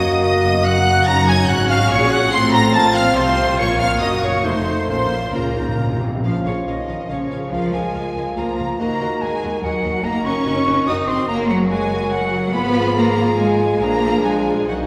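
A dramatic, urgent classical-period symphonic movement in 3/4 with a rubato feel, where a lush, distant violin section carries the melody over a second violin line with portamento, an airy flute, a background clarinet and very quiet, rich violas, while a bassoon, French horns holding chords, mellow trumpet stabs that stop at 6.0 seconds, expressive cellos and double basses, and a round, soft-mallet timpani fill from 4.9 to 6.2 seconds fill out a spacious, reverberant concert-hall sound.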